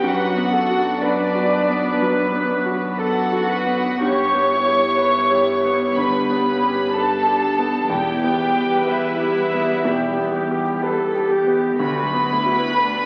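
Cinematic, emotional film score for orchestra, this excerpt moves at a slow 62 BPM in 4/4 with a rubato feel, carrying a longing, bittersweet mood in E dorian. A clear, pure violin section sits up front with the melody, bowed sul tasto so it seems to float, while a second violin section plays a rich, intimate second line beneath it with light vibrato and a soft attack. A bright concert grand piano, brilliant and polished with deep bass and short sustain, carries the accompaniment alongside a warm viola section tucked into the background. The cello section adds a warm, pure, floating bass voice, and a double bass section anchors the low end with a soft attack and a smooth top. Timpani struck with hard mallets on calf heads enter briefly at 7.9 seconds, articulate and dry in the background, as the harmony moves from Bm/F# through G and Em to D6. The whole excerpt is bathed in wet scoring stage reverb and sounds like a very old 78 rpm record, with vinyl crackle and a dulled top end.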